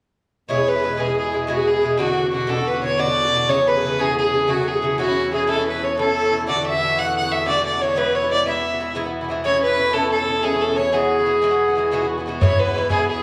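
A bowed fiddle with a gut-string tone and a smooth top carries the melody up front in this cheerful, bright Celtic slip jig in 9/8, cut from a longer piece. An accordion with a boxy, small-room character plays a second line in the same register, while a picked Irish bouzouki with metallic double strings sits up front with mellow acoustic accompaniment. Underneath, a hand-pumped harmonium holds a low, nasal, breathing drone. The harmony moves through chords such as E, Bm, F#madd9, A and D before settling back on E. A damped, tight bodhran, close and dry, joins only at 12.4 seconds for a brief moment before the band stops at 13.2 seconds, all captured live in one room with a wet, large studio reverb.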